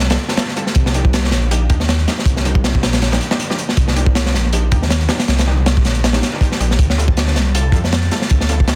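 Nostalgic and atmospheric, this short drum and bass passage with a jungle flavour moves at 159 BPM in 4/4 with a light swing on the sixteenths. A crunchy, saturated breakbeat kit sits up front, its tight kick, medium-tuned snare and hi-hat sounding gritty with a rolled-off top in a small studio room. Beneath it, a dark detuned saw bass rumbles deep and sustained between Bb1 and F2, its unison voices beating against one another. In the background, a bold, layered orchestra-hit-like synth stab lands punchy, bright accents with a noise layer and filter sweep, trailed by reverb and dub echo, over chords that shift from a rootless Dm11 to Cm11 and back to Dm11 at 6.8 seconds. At 7.1 seconds a very quiet, glassy texture of drifting overtones on a high A enters with a slow, calm bloom, chorus and reverb, before this fragment of a longer piece is cut off in a dense, heavily limited modern master.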